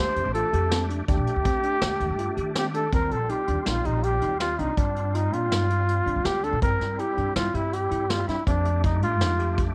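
A breathy, mellow trumpet opens this bright, driving progressive instrumental over a reedy tonewheel organ with chorus vibrato and fast rotary speaker, bell-like tine electric piano arpeggios, and a woody, thumpy pizzicato upright bass, all moving at 162 BPM in a straight 5/4 in Eb lydian. The trumpet sits up front with vibrato and scooped notes, echoed by a short slapback, while the organ and electric piano stay in the background and a vintage brush kit enters at 0.2 seconds with a punchy kick and a medium-tuned snare. Light small-room reverb surrounds this cut from a longer piece, whose chords move from F and Ebmaj7 into a second section at 2.9 seconds through Eb6, Gm7 and C7/G to F9.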